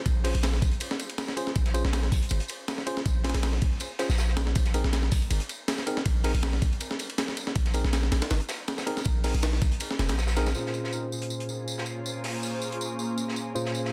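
A dense, heavily limited mix with light reverb carries this frenetic, raw drum and bass and jungle excerpt in Bb minor at 160 BPM, where a gritty, thumpy sampler-style breakbeat kit and a deep, mellow 808-style bass sit up front through the drop until 10.6 seconds, a crunchy, saturated second breakbeat kit with a rolled-off top runs underneath, clean tine electric piano stabs trail dub echo over Bbm9 and Absus2, and an ethereal, airy pad with chorus, phaser and 12-bit grit arrives at 11.4 seconds.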